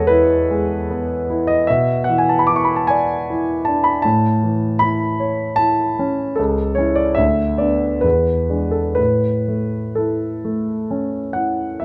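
Captured up close with detailed microphones in a recital hall with a moderate reverb, the recording places a warm concert grand piano up front, its deep bass full and resonant. This tender, dreamy romantic nocturne for solo piano moves in a rubato 3/4 at 60-80 BPM in A major, ranging from C#2 to D6. Cut from a longer piece, the passage opens on an E chord, drifts through E7/B, A, A/C#, Bm/D and E7, and settles home on A at 9.0 seconds.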